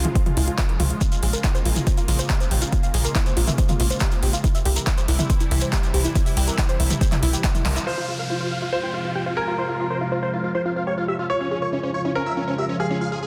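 A dense, heavily limited modern master with light reverb and digital ambience frames this euphoric yet bittersweet uplifting trance excerpt in F harmonic minor, running at 140 BPM in a straight 4/4. From the start, a lush, thick unison pad holds sustained chords with chorus, phaser and sidechain pumping, while a detuned sawtooth pluck with a noise layer spins arpeggios through cassette-tape colour and delay, under a filter sweep until 7.9 seconds. A tight, punchy sequencer bass drives the low end with sidechain pumping alongside a layered big-room kit of handclaps, metallic hi-hats and toms, an up-front analog kick from 0.2 seconds, and a grainy, close and dry shekere from 1.0 second. The harmony moves from Db through Bbm7 and C, and a drum fill and band accent at 7.7 seconds mark the turn into the second section. There a huge, detuned supersaw lead carries the melody with phaser, low-pass filter, delay and its own filter sweep, a brilliant, polished grand piano adds a second line through digital delay, and an electronic downlifter sinks beneath them as the chords shift from Fm to Db.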